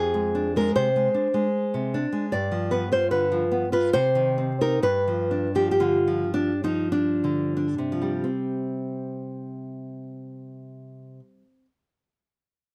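A lone fingerpicked nylon-string guitar opens this solemn, elegiac classical fragment in C minor, set in a slow 3/4 that moves with rubato between 42 and 78 BPM. The guitar is small and bright and sits up front, its fresh strings ringing clearly and finger squeak audible. It plays an accompanying role across a range from F2 to D5, moving through Dm7b5/F, G7 and Cm to a bare G5. The pace slows from 1.1 to 8.3 seconds, where a new passage begins on a C5 chord. The guitar falls silent at 11.6 seconds, just before the fragment ends. A moderate studio reverb and a dark production surround the guitar's crisp tone.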